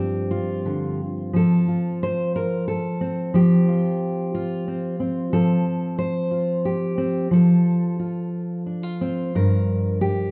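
Folk piece for solo fingerstyle acoustic guitar in 3/4, around 90 BPM with a rubato feel, carrying a melancholic, wistful mood in this brief cut from a longer work. A full-bodied, up-front fingerpicked steel-string dreadnought plays alone throughout, ranging from G2 to C5 and moving from Csus4/G to F before settling on Gm7 at 9.4 seconds. The guitar sits in a wet recital hall reverb with a 1.4-second decay, giving it the resonant air of a church or concert hall.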